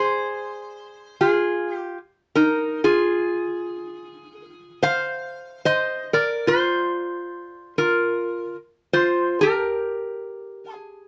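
This Hawaiian piece, cut from a longer work, drifts by in a relaxed, dreamy mood over a gently swung 4/4 feel. A lone metal-body resonator slide guitar carries everything, played with fingerpicks and a slide and sitting up front in the mix. Its tone is acoustic, metallic and a touch nasal, ranging from Eb4 up to F5. The harmony moves from Ab to Fm, then passes through a brief chordless stretch at 6.5 seconds before settling on Fsus24 and closing on Gm near 9.8 seconds. Light reverb and a dark, warm production give the solo instrument a hazy glow.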